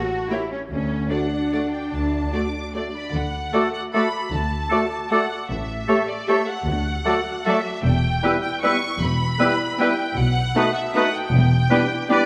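Moderate concert-hall reverb gives this bittersweet, dark orchestral excerpt a sense of space, with the violins set at a distance and the double basses sitting up front. In 3/4 at 140-166 BPM with a rubato feel in D major, a lush violin section carries the melody high above a second violin line and a background viola accompaniment, each with smooth vibrato. Warm cellos hold the bass from the opening, joined by clear double basses at 0.7 s, while mellow, close-miked French horns sustain very quiet chords underneath. At 3.5 s the winds join: an airy, hollow flute section and a punchy, roomy solo oboe add second lines beside a faint solo clarinet, and a bassoon with light vibrato fills in the accompaniment. The harmony moves from D toward E minor, passing through B7 before landing on Em7 as the fragment breaks off.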